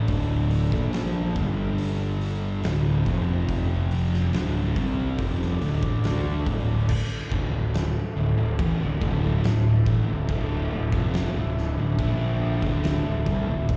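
Heard as a live gig through the venue's PA, this short cut from a longer stoner and doom metal piece carries a recital hall reverb and a top end that stops short of the highest frequencies. It moves at a hypnotic, heavy 71 BPM in 4/4 in D minor, with a second section arriving at 6.9 seconds; across the opening, the chords shift from Dm through G5, D5 and F5 before returning to Dm. Up front, a fuzz-soaked fingered electric bass sounds bright, growly and overdriven, while an oversized, low-tuned acoustic drum kit pumps in a big room with a boomy kick, a fat snare, dark cymbals and a saturated, gritty edge. Two thick fuzz guitars play the riff further back, one mellow and the other shadowy, both distorted and picked. Beneath them an analog drone of sawtooth and pulse-wave tones with pulse-width modulation holds evolving chords with a slow attack, long release and a chorus shimmer.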